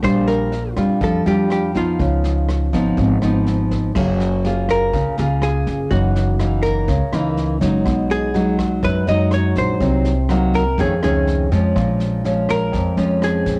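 Bossa nova at 123 BPM in a straight 4/4, this romantic, relaxed excerpt is cut from a longer piece and settles into F# major from 4.0 seconds. A fingerpicked nylon-string guitar sits up front with a classical touch, carrying the accompaniment through chords such as F#maj9, F#13 and Cm7b5. Above it, a hollow-body jazz guitar plays the melody with a clean, picked, compressed tone, mixed somewhat lower than the nylon-string part. An upright bass played pizzicato on gut strings gives a woody, thumpy low end, colored by tube saturation. Brushes on a vintage kit with a medium-tuned snare, a punchy kick, rim clicks and dark cymbals stay well back, with a smooth, rolled-off top. Light studio reverb and the character of a home cassette recording give the whole a dark feel.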